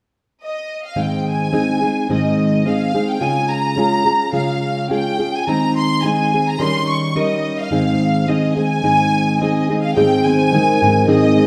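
In a loose 2/4 that breathes with rubato, this short mariachi-flavored Mexican folk passage feels proud and romantic. A lush symphonic violin section carries the melody from 0.4 seconds, its bowed ensemble tone focused and smooth on top, with vibrato, placed up front. From 1.0 seconds a fingerpicked nylon-string guitar supplies full-bodied classical accompaniment, also sitting close and present. At 10.0 seconds a concert harp adds bright, thumb-plucked arpeggios that ring out as the opening section returns. A generous recital hall reverb surrounds the ensemble, and the clip is cut from a longer piece.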